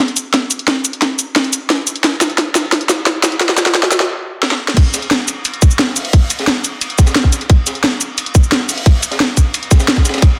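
Mechanical and dark, this drum and bass excerpt at 176 BPM opens with a build-up in which a tight, up-front electronic kick and a layered, produced kit (cracking snare, hi-hat, crash cymbal and cabasa) play a drum fill that stops briefly at 4.1 seconds. The drop lands at 4.8 seconds, where a quieter acoustic breakbeat kit joins with a high-tuned snare, hi-hat and ride cymbal, its sound gritty and saturated yet smooth, with a rolled-off top and small-room character. Light reverb and a dense, heavily limited modern master frame the drums.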